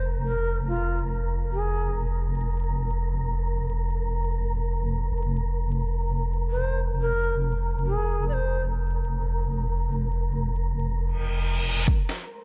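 A dark, dry production dusted with vinyl crackle frames this brooding, cavernous deep dubstep fragment in F minor, moving in free time over a held Fsus4. A deep, detuned wobble bass with chorus sits up front beneath a breathy, wind-like tuned noise texture, while a bright, airy shakuhachi with vibrato and dub echo plays brief phrases; an electronic impact opens the piece, and a reverse cymbal and riser arrive from 11.2 seconds. At 11.9 seconds a layered electronic kick lands, followed by a gritty, pitched-down trip hop sampler-style kit with hi-hat and snare.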